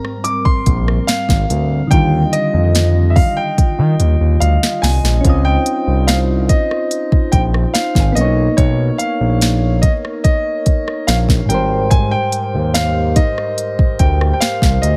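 This smooth, romantic contemporary R&B excerpt opens with a clear, intimate grand piano carrying the melody with tape echo and audible action noise. Beneath it sit gentle, round electric-piano-like synth keys with chorus in the background, ethereal sustained chords from a glassy glass harmonica, a very quiet woody mallet-like synth pluck, and an up-front R&B drum kit with a soft kick, sharp snare and crisp hats. A gliding sawtooth synth bass with vibrato and portamento joins at 0.7 seconds, and a drum fill from 3.6 to 5.2 seconds leads into a passage where the chords move through Dbmaj9 and Cbmaj9 back to Abmaj9, all set in a digital ambience.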